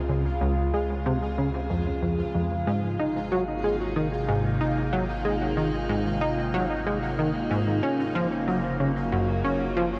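An evolving, morphing wavetable pad fades in with bright, phaser-tinged sustained chords over a round sine sub bass and a mellow, detuned pulsing texture, opening this cosmic, mysterious ambient space-music excerpt at 93 BPM, where a punchy, funky analog bass riff with ring modulation, filter pluck, analog delay and shimmer reverb sits up front through a Db, Abadd9 and Gb progression, all bathed in a huge, wet reverb and the worn, warbling pitch drift of old cassette tape.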